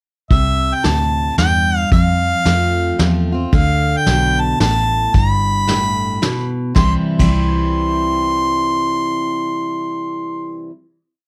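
A harmonica leads this short, sunny honky-tonk and classic country waltz, sitting up front with a motif-based melody built from period phrases. Beneath it, a picked dreadnought acoustic guitar alternates bass notes and strums with bass runs, its fresh strings letting a little finger squeak through. A vintage foam-muted electric bass, round and amped, holds to root-and-fifth lines with walk-ups. A brush kit in a small room carries the swung 3/4 groove with a punchy kick, a medium-tuned snare and dark, rolled-off cymbals; the band reaches its final chord at 6.8 seconds, and the drums fall away at 7.3 seconds while the others ring on. Light reverb gives the down-home piece a gentle, homely sense of space.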